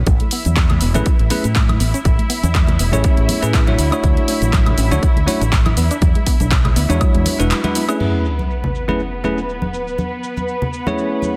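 A bell-like, up-front tine electric piano with slapback echo and sidechain pumping carries this feel-good, groovy nu-disco excerpt at 121 BPM in A major, over a punchy overdriven electronic kick, a layered house kit of hi-hat, handclaps, cabasa, woodblock and crash, soft-handed congas in the background, a bright envelope-filtered fingered bass that stops at 7.5 s, a very quiet detuned sawtooth unison pluck playing arpeggios, and distant, veiled muted violins holding sustained chords, until a sub drop hits at 8.0 s as the harmony returns to Amaj9.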